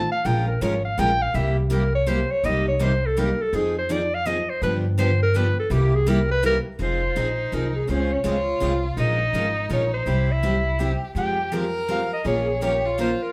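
Heard from further back in a small, reverberant room with a faint mains hum, this fiery, swinging snippet of jazz manouche in F minor moves at 165 BPM in 3/4. A breathy, punchy clarinet with vibrato, scooped notes and plate reverb carries the melody up front, soloing through the first 6.8 seconds over a thumpy, woody upright bass plucked on gut strings and two bright, picked steel-string acoustic guitars: one full-bodied with finger squeak, the other sitting in the background. At 6.8 seconds a single bowed violin enters on a second line, warm and expressive with portamento.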